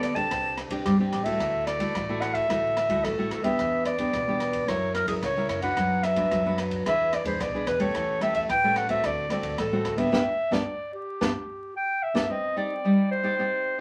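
A playful, lively samba-choro passage opens with a smooth-topped, classical-style clarinet leading up front over a full-bodied, fingerpicked nylon-string guitar with audible finger squeak, while a woody, growly pizzicato upright bass sits in the background and an airy jazz kit of boomy kick, dark ride cymbal, rim click and snare keeps time; the band hits an accent from 10.1 seconds, bass and drums stop at 12.3 seconds, and clarinet and guitar carry on to 13.8 seconds, all set in a club reverb with vinyl crackle beneath.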